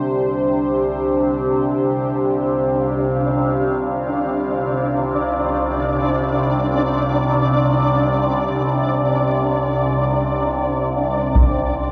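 This dark ambient drone opens on a resonant, overtone-sweeping drone in the low register, its moving overtones shaded by chorus, phaser and its own reverb, fading in across the first 11.4 seconds beneath a deep, detuned analog pad holding a Csus2 chord that fades out over the same stretch. Set in free time in C major, the piece feels unsettling and cavernous, steeped in a huge, wet ambient reverb with a long 8.5-second decay. At 2.8 seconds a flickering, grainy texture joins in the middle register, mellow and granular, lending a restless shimmer above the drone. The whole passage carries the wobble of worn cassette tape, its pitch drifting and warbling. Near the close, at 11.4 seconds, a taiko ensemble strikes briefly with hard sticks in a live room, its strikes muffled by a low-pass filter, before the drone and texture ring on to the end of this fragment of a longer piece.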